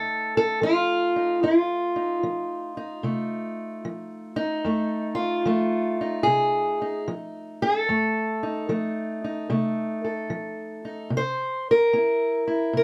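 Close, detailed microphones and a touch of light reverb put a dark, boxy parlour-style steel-string acoustic guitar up front in this short excerpt of laid-back, rollicking country blues. Fingerpicked alone at 74 BPM in 4/4 with a swung eighth-note feel, the guitar sits in F mixolydian, ranging from F2 to C5. It holds an F7 chord from the start before moving to C7 at 11.1 seconds.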